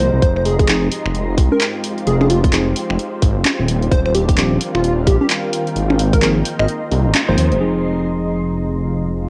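A swung two-step garage groove at 130 BPM in 4/4 drives this soulful, late-night cut from a longer piece in F dorian. A tight, layered electronic kick sits up front beside a punchy, tape-warm analog drum machine playing congas, finger snaps, handclaps and hi-hat, both colored by cassette tape. A dark, rumbling detuned saw bass saturates the low end, while a clean tine electric piano played through a combo amp adds delayed stabs over chords moving from Fm7 to Ebmaj13 and back. A catchy, punchy square-wave unison lead with vibrato and a moving notch carries the melody through cassette tape and analog delay. Behind it, a silky string machine with ensemble chorus and a cloudy, blurred granular pad with built-in reverb pump together in the background. The kick falls away at 6.2 s, the band hits an accent at 7.1 s, and the lead drops out at 7.6 s, leaving the piano, bass, strings and pad under light digital ambience with the grain of a home cassette recording.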